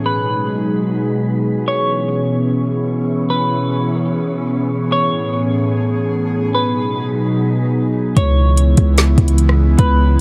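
Lightly reverberant and hazy, this atmospheric cloud-rap excerpt in C# minor moves at 148 BPM with a half-time feel, opening on a breathy, detuned pad with chorus and sidechain pumping, sustaining chords over a faint wind-like noise texture in the background. A dark, clean semi-hollow electric guitar carries a narrow melody through analog chorus, a low-pass filter and digital delay as the chords pass through G#m7, C#m7 and Amaj7, setting a melancholic mood. At 8.2 seconds a deep, sine-toned 808-style bass and a smooth R&B drum kit with a soft kick, woody snare, metallic hats and rim clicks arrive up front.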